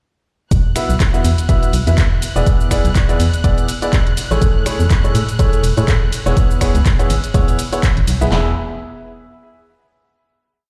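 Piano house with an uplifting, euphoric mood, this short piece launches straight into a drop at 0.5 seconds, riding a swung sixteenth-note groove. A punchy analog drum machine sits up front with a four-on-the-floor kick, snare and handclaps. A layered garage kit fills in programmed hi-hats, ride, shaker, finger snaps and claps on the backbeat, with warm hats heard as if in a small room. Underneath, a hollow, organ-like FM bass plays a dark, syncopated riff with a fast, decaying attack, and from 0.8 seconds a clear, woody upright piano with audible action noise drives the harmony with dotted-rhythm chords through delay. Both the bass and the piano pump against the kick, as does a lush, distant violin section that holds a high note in the background with vibrato and portamento. The whole track sounds as if played on a big sound system in a bare room with large studio reverb, and it settles on a final E chord at 8.3 seconds.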